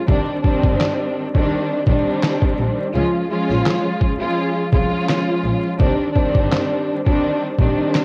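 Moody and reflective, this boom-bap hip-hop excerpt in C minor moves at 84 BPM with a lightly swung feel, as a dark, woody and lush bowed string section up front carries the Cmadd9 and Db chords through cassette-tape filtering, while a rich, smooth bowed double bass with vibrato sits in the background and a muffled, pitched-down sampler-style drum kit supplies a thumpy kick, medium-tuned snare and handclaps, all wrapped in small-room ambience and vinyl crackle for a homemade cassette character.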